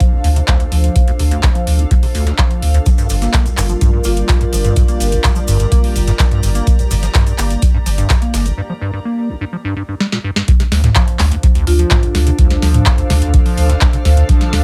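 A squelchy, resonant acid bass riff with a phaser and tube-saturated, cassette-worn grit sweeps its filter through the opening of this trippy, raw acid house clip, cut from a longer piece. Beneath it, an up-front electronic kick thumps deep, a round sine sub bass pumps against it, and a booming analog drum machine adds crisp snare, metallic hats, handclaps and toms, while a very quiet, gritty sampler-style soul kit supplies its own hi-hat and snare. A moody, detuned analog pad holds sustained minor seventh chords with chorus and sidechain pumping, joined by a cloudy, evolving granular pad that shimmers with its own reverb. A grainy, distant cabasa rattles in the background from 2.9 to 8.6 seconds, and a woody, vintage-toned marimba drops brief single notes soaked in dub echo. After a break and a drum fill, the drop lands at 10.5 seconds on a dry mix.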